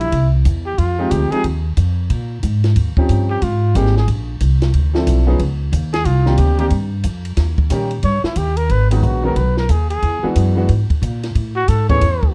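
Small-group swing and bop jazz with a moody, swinging feel, this short cut from a longer piece moves at 182 BPM in 4/4 with a swing feel on the eighth notes, settling into G# minor at 8.7 seconds. A breathy trumpet carries a solo throughout, its dark, present tone marked by light vibrato and scooped notes in a classic jazz manner. Beneath it, a clear concert grand piano with a deep low end supplies the chords until 12.0 seconds, moving through rich harmonies such as Fm9, Eb13 and Abmaj9 before shifting to G#m7, E9 and Amaj7. The upright bass sits up front in the mix, plucked with a woody, dusky sound from its steel strings. A compact cocktail drum kit keeps time on hi-hat, ride cymbal, snare and kick, sounding dry and natural with dark cymbals, a high-tuned snare and a tight kick. Light reverb and a warm, dark production give the group a moody atmosphere.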